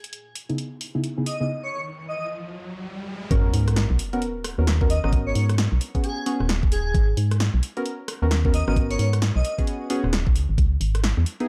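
An organ-like FM bass sits up front in this soulful, late-night UK garage excerpt in G# minor, arriving with the electronic kick at the drop at 3.3 seconds. Its hollow, percussive tone has a fast attack and a dark decay, paired with a knocking, layered kick that carries a tape-tinged weight. Underneath it all from half a second in, deep, mellow chord stabs soaked in analog chorus move through C#m7 and G#m11 before settling on C#m. These soft, warm stabs have a filter sweep and short decay. An airy, dreamy lead drifts over the top with a soft attack, sustained notes, vibrato and a layer of noise, shimmering through chorus, phaser and delay. A punchy analog drum machine drives the two-step swing at 132 BPM with overdriven hi-hat, rim click and snare, while a riser from 1.8 seconds ends in a sub drop, all in a dry, dark production.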